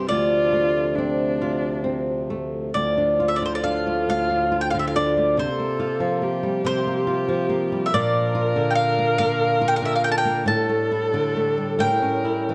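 Celtic slow air in a mournful, longing 6/8 with an unhurried rubato sway, where a mellow, double-strung mandolin carries the melody up front over a dark, bowed solo viola's second line with vibrato, a fingerpicked flamenco guitar's warm accompaniment, and a reedy, breathing pedal harmonium holding sustained chords in the background, all caught by close, detailed microphones with light reverb as the harmony settles from Dm7 onto an A7 at 11.8 seconds in this fragment of a longer piece.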